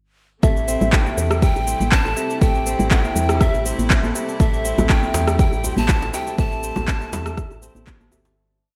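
An overdriven four-on-the-floor kick and gated, overdriven cabasa, handclaps and rim click drive this hypnotic afro house drop with a light swing, while soft interlocking congas and, from 4.8 s, a cracking djembe cross rhythm sit in the background. A woody FM bass plays a dotted rhythm beneath sidechain-pumped layers of clear, biting string pads, a crisp, ringing kora step sequence and tremolo tine electric piano stabs through a combo amp. Over them a breathy, reedy bamboo pan flute sings call phrases through digital delay, all set in a bright 1980s-style digital production with plate reverb that fades out from 5.7 s.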